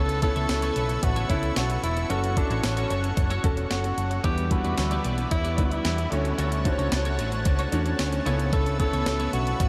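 A dreamy mix soaked in huge ambient reverb opens this nostalgic yet urgent 1980s-style pop excerpt, cut from a longer piece and moving in a straight 4/4. A breathy tenor saxophone carries the melody with light vibrato, scooped notes and a smooth top, its subtone lines trailed by tape echo. Beneath it, a clear baby grand piano with audible action noise plays accompaniment, while a lush, detuned unison pad holds bright sustained chords through chorus in the background. A very quiet twelve-string electric guitar picks a compressed riff, and a round, punchy hollow-body fingered bass sits up front with a dark, amped tone. A clean 12-bit drum machine with a thumpy kick, medium-tuned snare, hi-hat and tambourine is overdriven and re-recorded in a small room, joined at 0.5 seconds by a faint saturated cowbell. The chords move from Aadd9 to F#m, and at 4.2 seconds a crunchy, double-tracked overdriven guitar enters very quietly as the harmony shifts to Em7, then Dmaj7, before returning to Aadd9.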